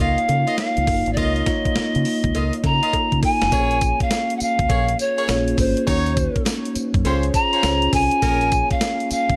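Slick and bouncy, this new jack swing R&B excerpt moves at 102 BPM in 4/4 with a 64% swing on the 16ths, built on a thumpy, sampler-style 12-bit drum machine (kick, snare, hi-hat and tambourine), a deep, round dub fingered bass, a very quiet dry cowbell, and a mellow tine electric piano with phaser accompanying through chords like Db69, Bbm7, Ebm7 and Dbmaj7. An airy, straight-toned pan flute with a tongued chiff carries the melody up front, while a jazz-style horn section punctuates with stabs treated with tape echo that stop at 8.5 seconds. A drum fill at 2.9 seconds leads into the second section at 3.5 seconds, all set in a small room ambience.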